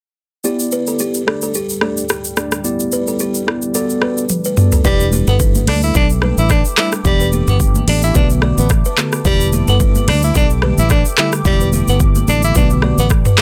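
A clear, lightly vibrato tenor saxophone carries the jazz-styled solo melody from 4.9 seconds in this sultry, hypnotic afrobeats excerpt at 109 BPM in E minor, its line touched with tape echo and cycling over Em7, Dsus4 and Bm7 chords. Underneath, an overdriven, up-front electronic drum kit with a deep kick, metallic hats, handclaps, rim clicks, shaker and toms swings its sixteenths, while a mellow tine electric piano, a buzzing, woody kalimba riff with tape echo and a deep, detuned ambient pad with chorus and its own reverb fill out the opening. A drum fill at 4.3 seconds brings in a round, dark fingered bass and very quiet, ringing high-tuned congas, all set in light reverb under a dense, heavily limited modern master.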